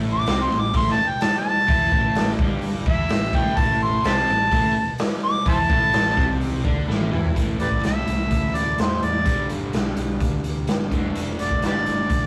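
A crunchy, double-tracked overdriven guitar riff and a growly fuzz bass open this smoky, brooding blues rock and southern rock power-trio excerpt, joined almost at once by an amplified, gritty harmonica that solos up front in a jazz style with scooped notes, tongue slaps and light vibrato, while a raw garage drum kit with a punchy kick and rolled-off top drives the straight 4/4 feel, its fill at 6.9 s leading into a new section where the harmony moves through G and Dm/F, all set in a rough rehearsal-room sound with moderate reverb.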